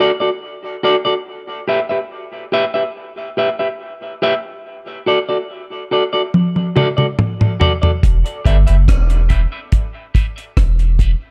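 Light reverb and a small-room ambience frame an echo-heavy mix in this hypnotic, deep dub reggae fragment, cut from a longer piece. A clean, fingered electric guitar carries the accompaniment from the start, sitting up front with a high-pass filter and dub echo, and a filter sweep colors it from 4.6 seconds onward. The reggae drum kit arrives at 6.3 seconds with a fill across hi-hat, kick, rim click and toms; its sound is acoustic, dry and dark, with a tight kick and a rolled-off top. At 8.0 seconds a soft, round sub bass enters, mixing triangle and square-wave colors with a fast attack and sustained notes in a low register. The harmony shifts between D and E minor, holding the groove in a steady, trance-like sway.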